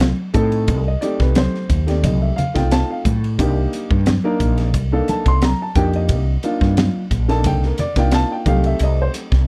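The woody fretless electric bass stands out most, sitting up front with a round, hollow-body tone colored by analog chorus as it holds the low end between Bb1 and A2. This is a short cut from a longer piece of driving, nocturnal electric jazz fusion at 89 BPM in 4/4, with a light swing on the 16ths in C dorian. A dark baby grand piano accompanies from A3 to C6, its boxy, intimate sound carrying audible action noise and a short sustain. A crisp fusion drum kit of hi-hat, kick, snare and ride has a high-tuned snare, a punchy kick and a gritty, saturated edge in a pumping small room, while compressed, medium-tuned congas with thick skins and hard hands sit in the background. The harmony moves from F9/C to Cm7 at 3.4 seconds and reaches Cm6 at 8.5 seconds, in a close, dry mix with little reverb.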